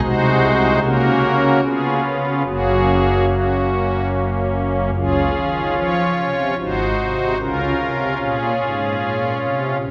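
In a steady, straight triple metre, this serene and reverent chorale-style classical passage, cut from a longer piece, features a solo pipe organ on soft, shimmering strings celeste stops in romantic voicing, sitting up front as its harmony moves to a new key centre at 4.9 s, all heard from further back within a lingering church reverb.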